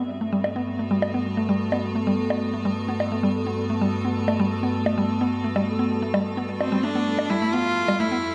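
Playful and glitchy, this IDM excerpt moves at 129 BPM in a straight 4/4 feel, centered in G major with a Gmaj9 chord that shifts to Fmaj7 at 6.6 seconds. An icy glass pad holds crystalline, airy sustained chords from the start, its slow attack and long release softened by chorus and its own reverb. Alongside it, a mallet-like synth pluck spins woody, nasal arpeggios in a narrow range, treated with chorus and tape echo while a filter sweep runs across it the whole way through. A quiet bubbling texture of random, resonant filter steps sits beneath, and electronic, analog bongos with tape echo enter at 0.4 seconds. A biting, bowed cello takes the melody up front from 6.6 seconds, with vibrato adding a focused edge against the dark, warm production and its lush hall reverb.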